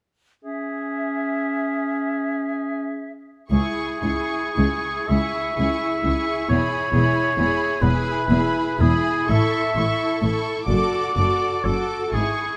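In a rubato 6/8 at a slow 35-46 BPM (dotted quarters), this yearning, solemn romantic orchestral passage in C# minor, cut from a longer piece, opens with a bright clarinet, an airy flute group and a clear, distant oboe; at 3.5 s the strings arrive, with a lush violin section singing the high melody over a focused second violin line, rich violas, warm expressive cellos and smooth double basses, as the harmony moves through E and A and the oboe carries on to 12.6 s, all captured by close, detailed microphones with light reverb.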